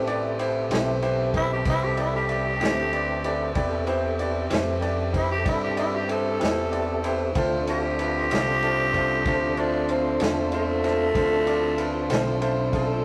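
Slow blues in 12/8 at 63 BPM in A minor, this mournful, soulful excerpt moves from Am7 to Dm7 at 7.4 seconds, with a growling, breathy tenor saxophone entering up front at 1.4 seconds with raspy, scooped notes and tape echo. Beneath it, a tonewheel organ holds lightly overdriven chords through a slow rotary speaker and chorus vibrato, while a saxophone section sustains warm vibrato chords in the background. A bright, woody upright piano, punchy fingered electric bass, a vintage drum kit with dark cymbals and a pumping room sound, and a very quiet, twangy clean electric guitar fill out the rough, saturated rehearsal-room recording in a moderate stone reverb.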